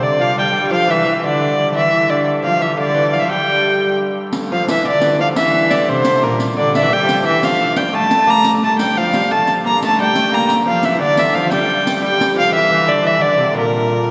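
A medieval dance in G dorian at 117 BPM in a straight 6/8, cut from a longer piece, ancient and mysterious in mood, with a dark, nasal, woody fiddle carrying the melody up front over a delicate fingerpicked lute and a distant, biting, gut-string viola da gamba playing a second line. A close, airy hurdy-gurdy holds a drone in the background, and a riq with bright jingles and soft hands joins at 4.3 seconds and drops out at 12.4 seconds. The whole ensemble sits in a wet church reverb with a long 2.8-second tail.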